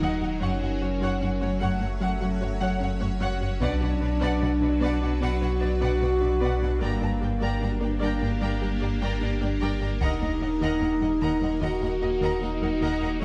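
Vast and relentless, this cinematic cue blends orchestral and electronic scoring in a steady 4/4, cut from a longer piece and set in a dark production with a moderate scoring-stage reverb. A mellow, distant French horn section holds sustained chords, joined by a cloudy, evolving granular pad that adds a blurred, bright shimmer through its own built-in reverb and phaser. Bowed strings with smooth vibrato fill out the texture: a chamber violin section carries a second line above a lush viola section's accompaniment, while a distant cello section sits in the background above a deep, clean sine sub bass placed up front. A soft, round pluck with chorus and tape echo traces arpeggios in the background throughout. A close, very quiet taiko ensemble struck with hard sticks enters only at 3.6 s and again at 10.0 s, as the harmony moves through Gbm, Bm, Gm and Ebm.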